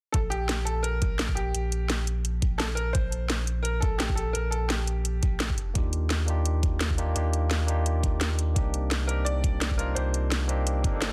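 A fast liquid drum and bass groove at 171 BPM in 4/4 drives this lush, dreamy excerpt in Bb major, with a gently swung sixteenth-note feel. A gritty, pitched-up electronic kick with a thumpy, tape-warm character sits under an up-front garage kit of cracking snare and metallic hi-hats, while a round, sine-like sub bass holds the low end with deep, sustained notes. A brilliant grand piano carries the melody from the opening through 5.5 seconds, its notes trailed by tape echo, then briefly returns around 9.1 seconds. At 5.7 seconds a barky, clean tine electric piano enters as accompaniment, also touched by tape echo, as the harmony moves from Bb5 to Ebmaj7 and then Cm9. The whole sits in a digital ambience with a dense, heavily limited modern master.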